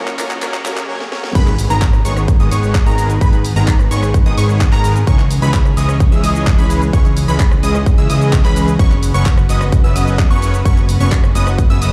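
Festival progressive house at 129 BPM in G# minor, this anthemic, powerful cut opens on a brief build-up where a soft, felt-muted upright piano with audible action noise and 12-bit grit sits in the background alongside a very quiet riser, noise sweep and impact, while house drum kit fills roll in. At 1.4 seconds the drop lands: an overdriven, punchy electronic kick drives up front, the piano falls away, and a bright unison pluck takes up phased, tape-echoed arpeggios high above. Huge, detuned supersaw chords carry the riff with gritty tape echo, backed by a slow-attack pad thickened with chorus, all pumping against the kick. Underneath, a fat, wave-folded analog bass holds down the low end with a saturated filter pluck. The house kit adds a cracking snare, handclaps, hi-hat, rim click, shaker and crash cymbal, re-recorded in a large room. The chords move from G#m through C#m to F#sus4, and the whole mix feels like a big system firing into a bare room.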